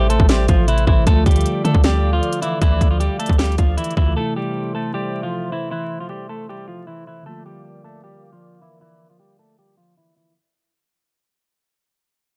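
An up-front trap kit with a hard-clipped kick, crisp hats and a sharp snare drives this dark, eerie half-time hip hop excerpt at 155 BPM alongside a boomy 808-style bass until about 4.1 seconds, leaving a clean, twangy picked electric guitar melody, a mellow tine electric piano and a detuned, chorused analog pad to carry the Am, Dm and Bb chords through a long fade-out and filter sweep, all wrapped in a dry, gritty recording with vinyl crackle and a barely audible downlifter at the start.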